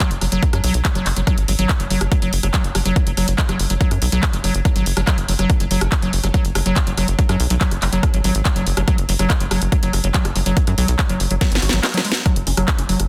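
Psychedelic trance with a driving, alien mood, heard in a short cut from a longer piece in straight 4/4. A heavy, layered electronic kick drum sits up front, joined by a techno drum kit of handclaps, hi-hat, rim click and a cracking snare roughened by soft clipping, both parts re-recorded in a large room. Underneath, a tight sequencer bass with a punchy, plucked sawtooth and square-wave tone drives the low end, also placed up front. Above it, a liquid acid bass riff brings squelchy, resonant filter sweeps, smoothed by chorus, pumped by sidechain and trailed by tape echo. A drum fill arrives at 11.4 seconds, and the kick drops out from 11.8 to 12.3 seconds, all set in light reverb and digital ambience under a dense, heavily limited modern master.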